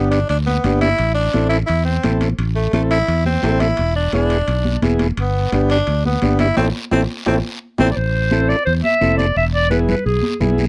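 This fiery, danceable cumbia excerpt in A minor opens with a raspy, gritty tenor saxophone taking an up-front solo, bright and shaded with vibrato, over a reedy, overdriven combo organ and a round, fingered electric bass. A raspy guiro joins high-tuned congas struck with hard hands and ringing metal-shell timbales, the latter two sitting in the background, driving a straight 4/4 at 172 BPM. The harmony moves through G, A minor, E7 and back to G. Near the end of the first section the band hits an accent while a drum fill rolls in. At 7.9 seconds the saxophone and timbales stop and a clear, soft-attacked clarinet takes over the melody in a classical style, sounding distant and roomy against the close rhythm section. The dry, close studio sound with light reverb gives the whole a 1970s character.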